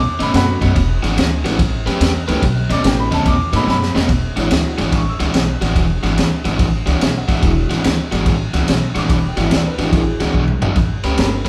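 Cut from a longer piece, this soulful, swaggering electric blues shuffle opens with a clear, slightly detuned upright piano taking a short solo over woody, thumpy pizzicato upright bass, until the piano stops at 4.1 seconds. An overdriven, up-front semi-hollow guitar carries the riff, a crunchy, gritty breakbeat kit with a punchy kick, high-tuned snare and dark cymbals adds fills at 3.7 and 10.3 seconds, and a mellow, boxy baby grand piano accompanies in the background. The band sounds as if it is playing live together in one room, with a moderate large studio reverb.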